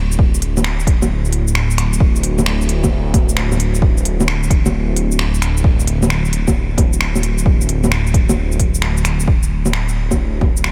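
A menacing, detuned sawtooth bass with tube saturation and sidechain pumping opens this melancholic, ghostly future garage excerpt, joined almost at once by a tape-toned organic electronic kit of bongos, finger snaps, smooth hi-hat and shaker set up front in a large room, and a punchy, layered electronic kick from 0.2 s, all riding a swung sixteenth-note feel in a dry mix.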